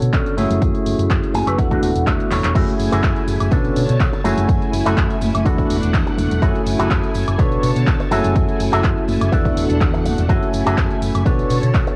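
Filtered disco house with a funky, nostalgic feel, cut from a longer piece and captured as a lightly reverberant home cassette recording, where a bell-like tine electric piano, a round hollow-body fingered bass, a tape-warm analog drum machine with handclaps, hi-hat, shaker, woodblock and crash, background tambourine and congas, and a twangy envelope-filtered guitar riff with 12-bit grit all pump against the sidechain alongside an overdriven electronic kick, while a clean guitar fill from 1.1 seconds and a drum fill at 2.3 seconds lead into the drop at 2.6 seconds, where a lush, phased string machine adds sustained F#m9, E9sus4 and Bm9 chords.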